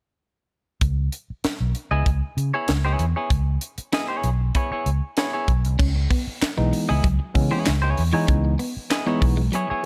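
Cut from a longer hypnotic, driving funk piece in C# minor at 96 BPM, it opens at 0.8 s on a C#m7 with a dark, round fingered electric bass up front and a dry, acoustic drum kit of tight kick, high-tuned snare, hi-hat, handclaps and bright crash cymbal, joined at 1.9 s by a twangy, compressed clean electric guitar accompaniment, then at 5.8 s by a second, warm picked guitar riff bathed in spring reverb, and shortly after by clean tine electric piano stabs heard through built-in speakers, the whole set in a studio reverb.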